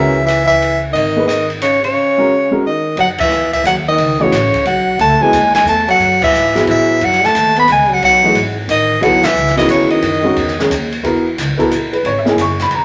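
Swung eighths in a lilting three carry this intense, spiritual modal jazz excerpt, where a clear, up-front soprano saxophone sings the melody over a breathy trombone second line while the whole band punches out accents along the way. Both horns stop at 10.7 seconds, and the woody upright piano accompaniment, thumpy pizzicato upright bass and open drum kit with dark cymbals and a boomy kick ring on in a large, wet studio reverb.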